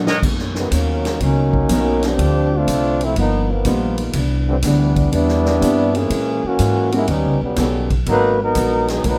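A drum fill on a swinging big-band kit, with dark cymbals and a boomy kick in a big room, opens this energetic big band swing excerpt at 122 BPM together with woody pizzicato upright bass, a dark, clean hollow-body jazz guitar and an intimate grand piano with audible action noise, the guitar and piano sitting in the background. From 0.6 seconds a clear, tight trombone section takes the solo up front, moving through rich jazz harmony from Bmaj9 to G#m9 under a light reverb, while the piano drops out at 7.9 seconds.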